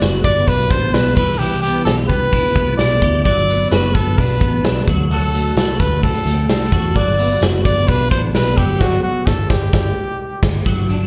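A clear, up-front trumpet with light vibrato carries the melody through this bright, nostalgic slice of jangly indie pop in G major at 130 BPM, its lines touched by slapback and tape echo. A twangy, chorused twelve-string electric guitar picks arpeggios while a dark, foam-muted picked bass and a big, punchy rock kit with bright cymbals drive the straight 4/4 groove through Gmaj7, Cmaj7 and D7 changes. Heard as a live gig through the venue's PA with club reverb, this cut from a longer piece arrives at a full-band accent from 8.8 seconds.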